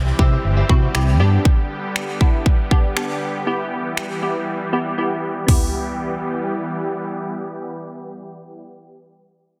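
A punchy, up-front house drum kit of layered kick, metallic hats, finger snaps and toms drives this energetic, confident dance-pop excerpt in E minor at 119 BPM, its snare softly clipped, over a dark, round muted electric bass that pumps to the sidechain before dropping out at 1.4 seconds. A slow-attack detuned supersaw swell carries sustained chords through C, G and Em under a filter sweep, punctuated by a crisp, bright wavetable chord stab. They are joined briefly at the start by a faintly broken-up picked guitar riff with subtle chorus and a barely audible downlifter. The drums fall silent at 5.0 seconds as the synths continue into a new section, all set in a lush hall reverb within a dense, heavily limited master.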